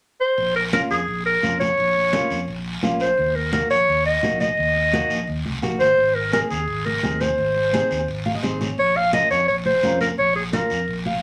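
A clear clarinet leads this short cumbia cut from a longer piece, sitting up front as a solo voice with light vibrato, punchy attacks and scooped notes in a jazz style, ranging from Ab4 to F5. It enters at 0.2 seconds over a danceable, passionate groove in Bb minor at 171 BPM in straight 4/4, moving through Bbm, Ebm and Ab before returning to Bbm. A fingered electric bass with an amped, growly tone holds the low end, while high-tuned congas with a damped, thin-skinned snap sit close and dry in the background beside a raspy guiro. A fingerpicked nylon-string guitar with fresh strings adds classical-style accompaniment from 0.7 seconds and slips in short fills around 8.1 seconds and again at the close. A wet small-room reverb gives the ensemble a compact, intimate space.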